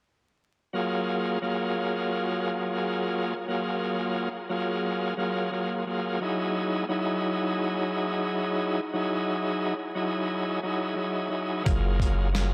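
Soaked in a huge, dreamy reverb with vinyl crackle, this soulful boom-bap hip-hop fragment opens at 0.7 seconds on a bright, shouting tonewheel organ, lightly overdriven and spun through a fast rotary speaker with cassette coloring, moving from F#maj9 to Emaj9 and back just as a round sine sub bass and a gritty, pitched-down sampler drum kit with thumpy kick, hi-hat and snare arrive up front at 11.7 seconds.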